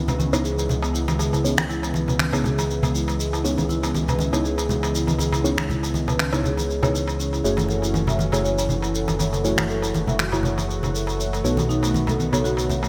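A hypnotic, driving afro house groove at 120 BPM in 4/4, with a 55% swing on the sixteenths, sits in C# minor and moves from C#m7 to F#m7 at 7.4 seconds and B7 at 11.4 seconds in this short cut from a longer piece. Electronic shaker and finger snaps carry a layered, produced pulse bathed in gated reverb, while compressed, saturated congas played with soft hands sit in the background and a crisp, metal-shelled darbuka adds small, high accents. Underneath, a dark detuned saw bass rumbles with a deep, beating unison tone and fast attack. A mellow chord stab with a nasal, decaying character and a filter sweep punctuates the harmony through chorus and delay, as a smooth analog pad holds sustained chords with chorus and tremolo. A woody marimba with soft mallets spins round arpeggios through delay, and the whole track sits in a lush hall reverb with bright 1980s-style digital production.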